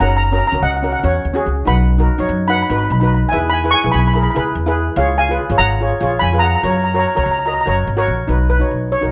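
A mellow, shimmering lead steel pan played with soft rubber sticks carries the melody over an airy double-seconds pan accompaniment and a woody pizzicato upright bass from the first moment of this sunny, carefree calypso excerpt at 145 BPM in B major, moving through F#, B, E and C# chords with light reverb and close, detailed microphones.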